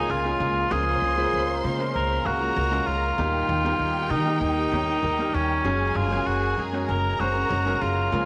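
A straight 4/4 pulse at 97 BPM carries this hopeful, uplifting piano-driven pop excerpt, cut from a longer piece and running about 8.3 seconds. Up front, a vintage-toned cor anglais sings the melody in a classical style, while a lush, bowed studio violin section with expressive vibrato adds a second line above it. A woody, thumpy pizzicato upright bass sits forward in the mix, and further back a felt-muted upright piano plays soft, intimate accompaniment with its action noise audible. A full-bodied, fingerpicked jumbo steel-string acoustic guitar supplies a riff in the background, and a very quiet analog pad holds smooth, detuned chords with a soft attack and chorus. The harmony moves from Db6 to Eb at 3.2 seconds and to Gbadd9 at 5.7 seconds, all bathed in a moderate echo chamber reverb.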